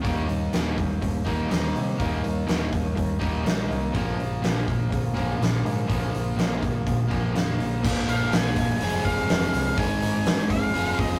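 A driving, brooding classic rock passage at 124 BPM opens with two crunchy, picked overdriven electric guitars playing riffs over Eb and Bb, backed by a growling fingered bass tucked in the background and a huge, up-front arena drum kit with a punchy kick, fat snare, hi-hat and bright crash cymbals. The brighter second guitar drops out at 7.8 seconds, and at 8.1 seconds a dark octave-fuzz lead guitar takes a high solo as the chords move to Fm and Ab. The rough rehearsal-room sound carries light reverb and warm saturation.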